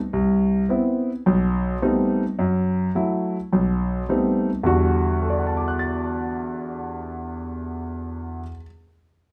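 An intimate concert grand piano carries this short solo jazz passage, cut from a longer piece, with a late-night, cool mood. The piano sits up front, its deep bass and audible action noise giving the sound a close, natural presence. The playing swings in common time and spans a broad range from low in the bass to high in the treble. The harmony moves from Cmaj7 through B7b9b13 and F#m7, back to B7b9b13, before settling on Em9 as a new passage opens at 4.6 seconds. A moderate studio reverb adds a gentle sense of room around the instrument, which plays until 8.7 seconds.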